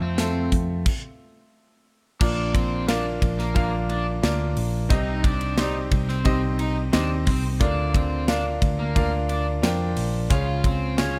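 Anthemic and uplifting, this piano-driven pop excerpt in straight 4/4 sets a clear, present baby grand piano up front with a bright, overdriven garage guitar riff, a dark, round, foam-muted electric bass, and a polished modern drum kit with a tight kick, medium-tuned snare, hi-hat, ride and crash cymbals. After a brief stop from 0.9 to 2.2 seconds, the band moves into a new section at 2.2 seconds. The harmony moves from Bb through Cm and Bb/D before landing on Db near the close, all within a small, airy room sound.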